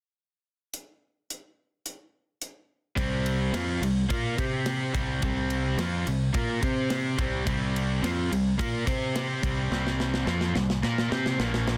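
This hard rock excerpt opens with a tight metal drum kit alone, its bright cymbals, medium-tuned snare and tight kick sitting up front in a studio room, with the kick carrying a touch of soft clipping. At 3.0 seconds two overdriven electric guitars enter on a C5 power chord with the riff, one dark and the other a cranked stack with a bright edge, both picked and covering the same span from low to high. A growling fingered bass joins them at the same moment, its direct and amped tone overdriven beneath the guitars. The mood is anthemic and powerful in a straight 4/4 groove, and the drums close the passage with a fill from 9.7 seconds onward. The sound is dry and dense, with a heavily limited modern master that keeps the whole band loud and tightly packed.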